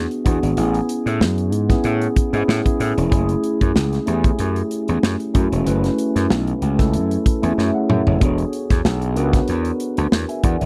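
A mellow tine electric piano with lush chorus and a gritty, overdriven slap bass open this urban, bittersweet slice of polished 1980s jazz-funk pop at 94 BPM in F# minor, joined by an up-front acoustic studio drum kit with a punchy kick whose fill at 7.6 seconds leads back to E7 after a lingering F#m9, all captured in a dry, close studio sound.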